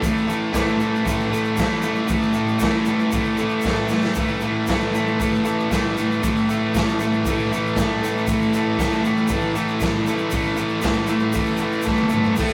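Garage rock in a swaggering, raw mood, this short excerpt cut from a longer piece moves at 117 BPM in a straight 4/4. A thick fuzz guitar, bright, picked and double-tracked, sits up front playing a distorted riff between A2 and A3 over an A5 chord. A raw garage drum kit of kick, snare, hi-hat, toms and crash sounds gritty and saturated, with a punchy kick, a medium-tuned snare and a rolled-off top, set in a bright stone room. Drum fills land at 3.9 seconds and again from 11.9 to 12.4 seconds. A grainy, mellow tube shaker sits in the background. The whole take has the rough feel of a rehearsal-room recording, with a short, wet booth ambience and a saturated glow.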